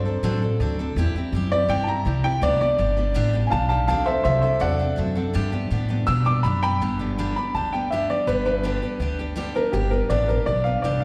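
A woody, up-front upright piano carries the melody with slapback and tape echo in this rowdy, retro rockabilly excerpt at 164 BPM in G major, backed by a full-bodied picked dreadnought acoustic guitar with its own slapback echo and a thumpy pizzicato upright bass on gut strings, moving through D7, C and G with a new section arriving at 6.8 seconds, heard as a live gig through the venue's PA in a lightly reverberant recital hall.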